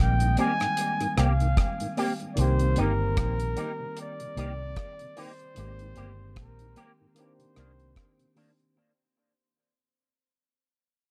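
Smooth and longing, this lovers rock reggae fragment at 75 BPM in C minor drifts over Abmaj9 and Cm7 chords as a breathy, whispered flugelhorn sings the melody with scooped notes and tape echo, a barky tine electric piano and a very quiet tonewheel organ with slow rotary speaker fill the accompaniment, a twangy envelope-filtered guitar adds bright stabs from 0.4 seconds, and a round, foam-muted bass and a dry, tight-kicked drum kit with hi-hat and rim click sit up front in a dark small-room production that fades out throughout.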